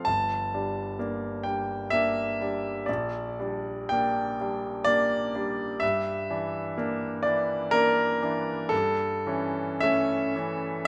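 A bright, up-front grand piano carries this yearning, mournful romantic nocturne alone, its long sustain and audible action noise giving the sound an intimate, polished presence across a range from G1 to A5. Moving in a slow 3/4 at around 62 BPM with free rubato and uneven beats, the harmony passes from G minor through Gm/Bb and Em7b5/G to A7/G, tuned slightly high at A4 = 441 Hz. A moderate scoring-stage reverb surrounds the instrument in this roughly 11-second fragment of a longer piece.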